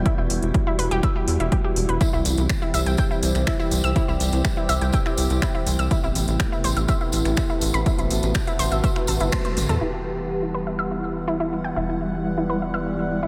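Melodic techno at 123 BPM in E minor, hypnotic and dark, built on an up-front, punchy overdriven kick, a house kit with metallic hats, finger snaps and toms, and a tight, saturated sawtooth sequencer bass, with a jingly acoustic tambourine joining at 2.0 seconds. Above them a resonant, evolving pad with chorus and phaser holds Emadd9, C and Amadd9 chords, a blurred granular cloud pad drifts in the background, and a round, nasal, wave-folded analog pluck spins arpeggios through tape echo, everything melodic pumping to the sidechain. A drum fill and band accent at 9.3 seconds give way to a sparer passage where the drums drop out and a thick, detuned unison lead briefly sounds a G4 in the distance, all bathed in a dreamy cathedral reverb in this excerpt from a longer piece.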